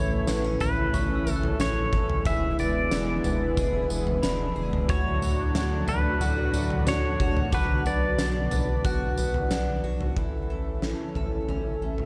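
A straight 4/4 pulse at 91 BPM carries this ethereal, dreamy dream pop excerpt, cut from a longer piece, with an oversized, low-tuned drum kit entering at 0.3 seconds to sit up front with a boomy kick, fat snare, tambourine and toms in a big, pumping room that sounds saturated and gritty. Underneath, a round analog bass holds down the low end with a deep, sustained tone, while a lush unison pad spreads thick, warbling, detuned chords through a chorus effect. A picked twelve-string acoustic guitar plays octave-doubled arpeggios with a woody, boxy character from old strings, shimmering through lush chorus and digital delay. Over this, a bright, twangy pedal steel guitar carries the melody with fingerpicks, slide and volume swells, its clean compressed tone trailing a digital delay until it stops at 9.1 seconds, and a glockenspiel struck with hard plastic mallets rings faintly in the background from 0.9 seconds, bell-like and smooth. 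The chords move from A through E7, D and Bm before returning to A at 10.2 seconds, all set in light reverb within a dark production.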